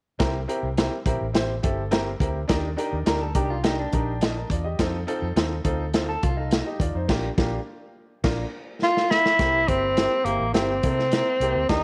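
Set in light reverb, this uptempo 1960s-style soul excerpt moves at a danceable 104 BPM in 4/4. It rests on a gritty, saturated breakbeat kit with dark cymbals sitting up front, a round, punchy foam-muted electric bass, and a woody upright piano with audible action noise. A slightly broken-up, lo-fi picked electric guitar riff appears from 3.1 to 7.1 seconds as the piano adds a fill. Following a band accent, a breathy subtone tenor saxophone with vibrato and scooped notes takes the melody up front at 8.8 seconds, entering alongside a drum fill. Throughout, the chords move through C7, Ebmaj7, F7 and Bb6 before returning to C7.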